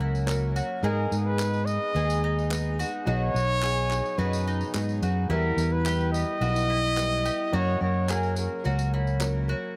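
Recorded with little reverb in an echo-heavy mix, this uplifting indie folk excerpt in straight 4/4 has a building arrangement and is cut from a longer piece. Up front, a breathy, close-miked trumpet carries the melody with light vibrato and dub echo, while a round, amped fingered electric bass sits forward beneath it and a soft, felt-muted upright piano murmurs in the background with its action noise audible. A shimmering, octave-doubled twelve-string acoustic guitar and a woody mandolin playing arpeggios both carry dub echo, and a crisp group handclap and a jingly, band-limited tambourine add percussion from the opening second.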